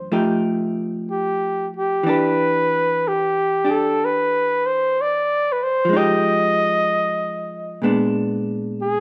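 A tender, intimate jazz ballad at 63 BPM with a gentle swing opens on a smooth-topped flugelhorn melody, played with light vibrato and scooped notes through plate reverb, over a dark, clean, picked electric hollow-body guitar accompaniment, both up front in a moderate studio room, moving through F9, Em7, Fm9 and Bb7b9 across this 9.0-second excerpt.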